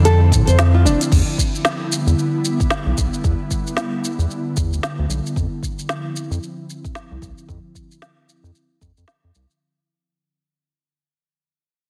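This short cut of earthy, mystical organic downtempo in D dorian opens on an ethereal, detuned pad with chorus, reverb and sidechain pumping, over a round, up-front analog bass with tube saturation. A dark, fingerpicked nylon-string guitar plays delayed arpeggios only until 1.0 seconds, after which the chords move from Dm9 to Em7 and back. At a swung 113 BPM, a deep electronic kick and a kit of woody snare, crisp hats, shaker and crash carry the groove, and from 1.1 seconds the piece fades out while a filter sweep works on the pad, all inside a lightly reverberant, heavily compressed, radio-like sound.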